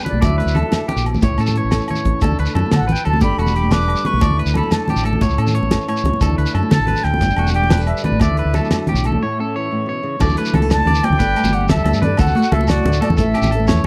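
A reedy, airy concert flute carries the melody across a range of D5 to D6 with gentle vibrato and a soft attack, floating over a danceable, carefree highlife guitar band groove in 12/8 at 120 BPM in D major. Beneath it, a flamenco guitar plays thumb-plucked accompaniment, while a twangy electric guitar on the edge of break-up picks arpeggios through spring reverb and tape echo. A round, punchy fingered electric bass sits up front, joined by a damped 70s drum kit with a fat snare and tight kick, plus high-tuned congas played with soft hands, a grainy shekere and ringing agogo bells in the background. The harmony cycles through Dadd9, A and Gadd9, with a drum fill at 1.6 seconds and a break at 9.2 seconds before a new section begins at 10.2 seconds. The dry, close 1970s-style studio sound keeps this short cut from a longer piece intimate and lively.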